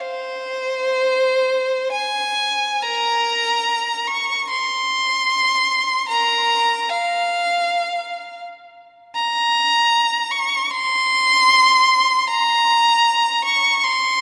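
A lone bowed violin, clear and focused with a singing vibrato, sits up front and carries this mournful, lonely classical passage from start to finish at 14.2 seconds, moving between Bb4 and Db6. The playing unfolds in free time with an expressive feel, and a wet church reverb with a 3.4-second decay surrounds the single player in a vast, echoing space. The recording is cut from a longer piece.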